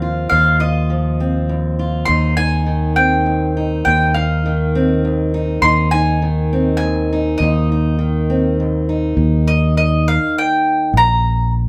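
A woody, double-strung mandolin carries the melody up front in this uplifting, nostalgic indie folk fragment in 3/4, over fingerpicked steel-string acoustic guitar with audible finger squeak and a dark, round fingered electric bass, all three played live together in one room with moderate large studio reverb, moving into a new section at 9.2 seconds before the guitar stops at 10.9 seconds.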